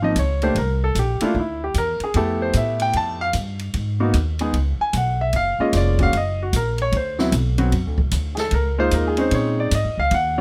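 A jazz piano trio swings at 151 BPM in 4/4, with a sophisticated, warm mood in this short cut from a longer piece. The grand piano carries the melody as a solo across the full 10.4 seconds, ranging from F3 to A5 with a natural, up-front tone. Beneath it, the upright bass is plucked, woody and thumpy, its steel strings sounding dark and close between F1 and Bb2. The open drum kit, heard from 0.2 to 10.2 seconds and sitting lower in the balance, uses hi-hat, ride, snare and kick, with dark cymbals, a medium-tuned snare and a boomy kick in a small-room acoustic. The harmony moves through rich colours, from Dbmaj13 and C9 to Fmaj9#11, Abm, a rootless Esus2, Gbmaj9 and D13, before settling on Db69. Close, detailed miking with little reverb gives the trio an intimate, present sound.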